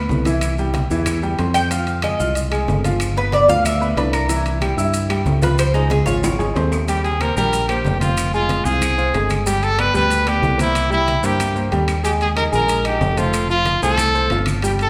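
A picked Cuban tres with metallic double strings carries the melody up front, entering at 1.5 seconds for a solo passage over this danceable, passionate salsa excerpt in F minor at 186 BPM. A drum fill at 6.2 seconds leads into the second section, where a bright, forceful trumpet with a vintage pop-band character takes over the lead at 6.9 seconds. Underneath, a clear concert grand piano plays accompaniment with intimate action noise and long sustain, while a dark, round fingered electric bass punches through up front. The percussion sits lower in the mix: very quiet, damped low-tuned congas, ringing metal-shelled timbales in the background, grainy maracas, and distant woody claves. The whole performance sits in a reverberant concert-hall space that lends it a wet, spacious finish.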